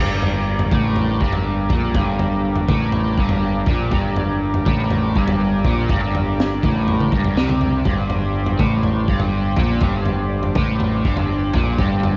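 A bright, double-tracked overdriven guitar riff swirling through a rotary speaker opens this dark, mysterious psychedelic rock passage in G minor at 122 BPM, over buzzy vintage combo organ chords with light vibrato and a growling, overdriven picked bass, as a crunchy, gritty breakbeat kit with a punchy kick, high-tuned snare and toms enters at 0.2 seconds in a lightly reverberant studio room, all held on a single G minor chord.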